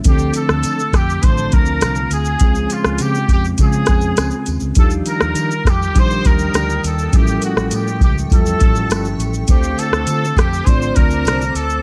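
An overdriven vintage rhythm box with a deep kick and metallic hats sits up front in this laid-back, hazy bedroom-pop excerpt at 102 BPM, carrying a distant, lightly vibrato trumpet melody over a round, foam-muted bass, twangy clean guitar with lush chorus, a flute-like organ on slow rotary speaker, a very quiet jingly tambourine and a blurred granular cloud pad that drifts in at 5.9 seconds, all moving through Dm7, Dbmaj7, Ebmaj9 and A7b13 in a dry, gritty hardware recording with digital ambience.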